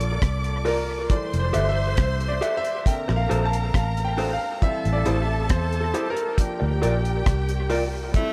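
Opening together, a clear concert grand piano carries the lead in this romantic, smooth lovers rock reggae excerpt at 68 BPM in 4/4, its natural tone and deep bass trailing a dub echo as it moves through C9sus4, Fmaj9, Bbmaj9 and Am7. Beneath it, a deep reggae drum kit sits up front with a tight kick, hi-hat and rim click, its dry, dark sound and rolled-off top keeping the groove smooth, while a vintage muted fingered electric bass adds a round, foam-muted low end. A rich symphonic string section plays a lush, bowed second line with vibrato, sounding focused and close. From 0.6 seconds an electric guitar through a small old amp cuts in with short stabs, its slightly broken-up, lo-fi, compressed tone washed in spring reverb and dub echo. Just at the close, at 8.2 seconds, an edgy tenor saxophone enters up front with a punchy, forceful note, all within light reverb and a small room ambience.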